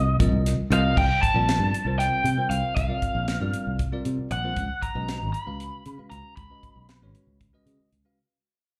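A dark, overdriven lead guitar carries the melody up front, picked through a small cranked amp with slapback echo, in this driving, funky electric jazz fusion clip in 7/8 at 233 BPM (eighths). Beneath it, a bell-like, bright tine electric piano accompanies with its own slapback echo, a warm fingered electric bass sits up front, and a polished, tight funk kit with a high-tuned snare enters at 0.2 seconds. The harmony moves from Cm7 to C13sus4 and Db13sus4, heard like a live gig through the venue's PA with club reverb, and the recording fades out from 1.0 seconds to its end at 8.2 seconds.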